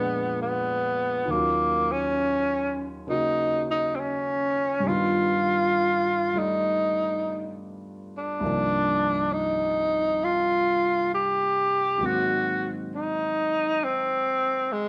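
Tender and late-night in mood, this jazz ballad excerpt unfolds in a gentle swung 4/4. A breathy tenor saxophone carries the melody up front throughout. Its mellow subtone, soft attacks, scooped notes and vibrato give it a whispered, vintage character. Beneath it, a grand piano supplies accompaniment across the full 14.9 seconds, its warm, natural tone, long sustain and audible action noise adding intimacy. The harmony moves through rich extended chords, from Bb7b9 through Ebm9, G7b13 and Cm11 to Ab9 at 12.0 seconds, while a moderate large-studio reverb lends the close performance a sense of space.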